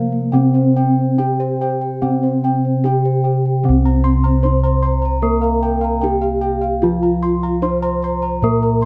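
Close, detailed miking and a light reverb frame this shimmering, ceremonial excerpt of Javanese gamelan, moving at 69-76 BPM in a straight 4/4. A bronze metallophone struck with padded disc mallets carries the melody, its paired tuning producing shimmering beats in a boxy small-room tone, while a darker metallophone played with a wooden mallet supplies the accompaniment beneath it. High arpeggios come from soft, round bossed gongs placed up front and from a dry, full metallophone, and bright, beating bossed gongs anchor the bass as the music passes into a new section at 3.7 seconds.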